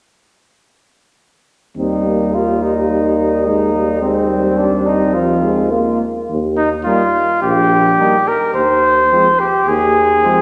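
A cornet carries the melody up front, entering at 6.6 s over a triumphant, noble brass quintet in Eb major at a steady 106 BPM in 4/4. From 1.8 s the flugelhorn sings a second line with light vibrato, a soft attack and a vintage tone, while a mellow, distant French horn and a close-miked trombone supply accompaniment and a present tuba anchors the bass. The whole passage, cut from a longer classical piece, sits in a wet concert hall reverb and runs to 10.4 s.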